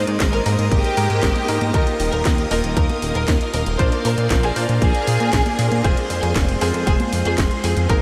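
A straight 4/4 pulse from a punchy electronic kick and a tape-toned house kit of congas, handclaps, hi-hat and cracking snare drives this sunny, romantic italo disco passage, where a glossy chorused synth bass sits up front beneath lush phased string-machine chords, bright grand piano stabs and an expressive violin section melody with vibrato, the piano and violins trailed by analog delay and the whole mix soaked in dreamy, huge ambient reverb.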